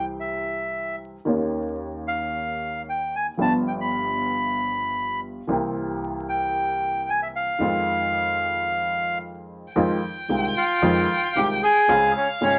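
A passionate, tense tango in F minor at 113 BPM with a rubato feel, this excerpt puts a reedy, bright bandoneon melody up front over a woody, slightly detuned upright piano and a dark pizzicato upright bass sitting in the background. At 9.7 seconds a single bowed violin enters with a second line full of vibrato and portamento and a soft attack, while chords move from C through Eb7, G7, C7 and Fm7 to Dbmaj7. Moderate studio reverb and a layer of vinyl crackle round out the sound.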